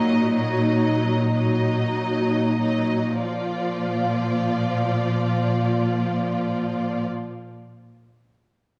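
A lush string orchestra opens together: the violins carry a focused, vibrato-rich melody above a more distant, expressive second violin line, violas add accompaniment with expressive portamento, and an up-front, close cello section holds the bass. This short, lyrical excerpt from a slow romantic classical movement sits in Bb major and 3/4 at 43-65 BPM with a rubato feel, easing back over the first 3.2 seconds as an Ebm/Bb chord gives way to Bb. Moderate scoring-stage reverb and a dark, warm production wrap the bowed ensemble in a rich sheen.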